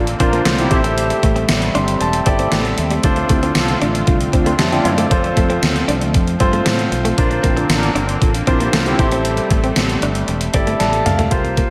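1980s-style pop at 116 BPM, uplifting and romantic, cut from a longer piece, where an intimate, up-front grand piano with slapback echo and fills at 1.5 and 10.5 seconds plays alongside a thumpy, overdriven drum machine with gated reverb snare, a fretless bass bathed in lush chorus, a picked, compressed clean guitar riff with tape echo, round detuned synth brass stabs, and a shimmering pulse-width pad holding chords from Bbadd9 through Am7, Dm7 and F, all in a big arena-sized hall with a drum fill at 10.8 seconds.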